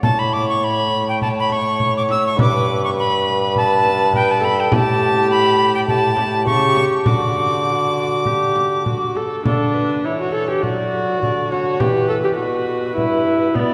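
A steady, straight 4/4 pulse at 102 BPM carries this courtly, stately Renaissance-style consort dance in D major, tuned slightly low with A4 at 437 Hz. A bright alto recorder leads the melody up front, its airy, woody tone marked by a soft chiff at the start of notes and a gentle vibrato. Also up front, a single bowed viola plays the second line with a close, nasal, gut-string character and a reedy, period-style colour. A clear trombone supplies the bass from a more distant, roomy position, while a small frame drum adds bright, acoustic percussion. All four parts play together for the whole 13.7 seconds, moving through A, G and A7 before settling on D, then shifting to a new section at 9.5 seconds that touches E minor at 11.8 seconds. A long, wet church reverb surrounds the ensemble, and the piece is cut from a longer work.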